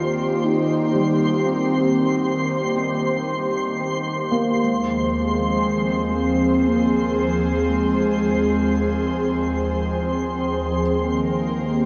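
Weightless and luminous, this slow ambient fragment in Eb major drifts at 58 BPM in a gentle 3/4, cut from a longer piece. A velvety synth lead carries the melody with smooth vibrato, chorus and tape echo before falling silent at 9.7 seconds. Up front, a breathy pad sustains soft detuned chords with a slow attack and long release, and it is the only part still sounding by the close at 11.9 seconds. In the background, a felt-muted upright piano adds dark, intimate arpeggios touched by tape echo. High above, a twinkling granular texture sparkles with an octave-up shimmer through its own reverb. The harmony moves from Eb6 to Fm/Eb and back to Eb6, and a huge reverb with a 7.4-second tail soaks the whole mix in a dreamy haze.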